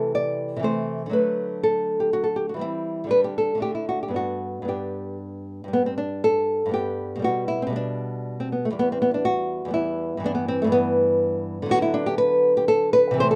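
A solo nylon-string guitar, fingerpicked and up front with a dark, small tone, opens this serene, dance-like classical piece in a baroque style, set in G major and 3/4 at 121 BPM with a rubato feel. The first phrase moves from Am/C through D to settle on G by 4.1 seconds, and a second section from 5.7 seconds drifts through G/B, Em and Bm/D, spanning E2 to D5 in a light reverb. This short passage is cut from a longer piece.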